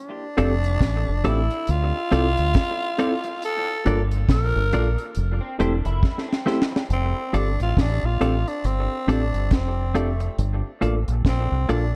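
Romantic and smooth, this slow lovers rock reggae passage at 69 BPM in F major, cut from a longer piece, has a raspy, growling tenor saxophone with light vibrato carrying the melody through tape echo and stretching into a solo from 6.9 seconds. Beneath it, a mellow tine electric piano sits in the background with dub echo, a clean, hollow-body semi-hollow electric guitar adds compressed stabs through spring reverb and dub echo, and a round, punchy fingered bass and a dry drum kit with a high-tuned snare and tight kick sit up front, the kit playing a fill just before the solo. A slightly broken-up electric guitar through a small old amp adds brief picked arpeggios with analog chorus and dub echo from 5.4 seconds, all within a dark, warm production that has little reverb.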